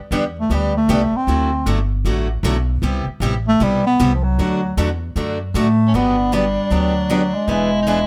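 Jazz manouche with a playful, lively swing at 155 BPM in G major, where a boxy, picked parlour acoustic guitar with audible finger squeak and a woody, thumpy pizzicato upright bass on gut strings back a clear bass clarinet melody with light vibrato and scooped notes, and a breathy, bright soprano saxophone joins at 5.9 seconds with a second line, all captured through close, detailed microphones with little reverb in this excerpt from a longer piece.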